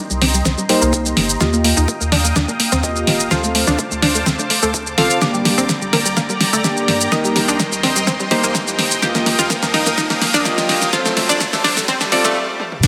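Progressive house at 126 BPM in 4/4, bittersweet and expansive, this excerpt is one long build-up over Cm7, Ebadd9, Dm7 and Gm, with a lush detuned supersaw pad and a bright, chorused analog pluck arpeggio both under filter sweeps, joined by mellow, evolving chord stabs with delay, all pumping against the sidechain. A round, dark analog bass and an up-front, tape-warm deep house kit with a fat snare enter at 0.1 seconds, drum fills running throughout, while a deep electronic kick sits in the background from 0.5 seconds. Very quiet risers and impacts arrive at 2.0 seconds, and a swell at 11.9 seconds leads into a brief break at 12.4 seconds, all set in a moderate digital room reverb.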